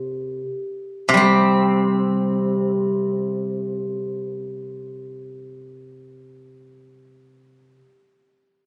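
Chinese traditional solo plucked-string music in free time, serene and elegant, this short cut from a longer piece features a steel-string zither played with fingerpicks across a range from C3 to C4. The acoustic zither sits up front with a bright, silvery, ringing tone, heard alone for its full 7.7 seconds with light reverb. The phone recording places it in a club-like room with compression, and the music moves into a new section at 1.2 seconds.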